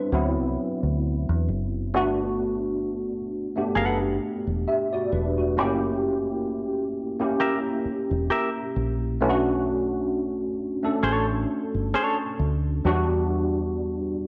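A worn, slightly out-of-tune tine electric piano opens this smooth, sensual neo-soul R&B fragment at a slow 66 BPM with a gentle sixteenth-note swing, moving through D13, Gmaj9, F#7b9, Bm9 and Em7 as a dark, round, foam-muted fingered dub bass joins almost at once with punchy, saturated weight up front. At 3.8 seconds a clean, compressed semi-hollow electric guitar adds a second line, carrying a touch of spring reverb until 12.2 seconds, while the piano's ensemble chorus shimmers through a combo amp. A moderate echo-chamber reverb gives the mix a soft halo of space.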